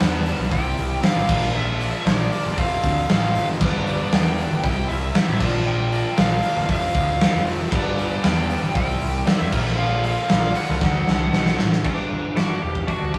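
A fuzz-soaked picked electric bass drives this cathartic, anthemic stretch of quiet-loud alternative rock, punchy and up front as it anchors a straight 4/4 groove at 117 BPM. A big, dark-toned acoustic drum kit sits just as close, its punchy kick, medium-tuned snare, hi-hat and crash filling a large room before a drum fill from 10.8 seconds. Over this, a biting, overdriven lead guitar carries the melody while a double-tracked, hollow-bodied semi-hollow guitar grinds out a riff further back, cycling through G, C and Bb chords and landing on D7. At 11.8 seconds the riff guitar drops out, and at 11.9 seconds a clean, compressed, twangy guitar enters with tremolo-tinged arpeggios over a Gsus2. The rough rehearsal-room recording carries tube saturation, studio ambience and light reverb, and the passage is cut from a longer piece.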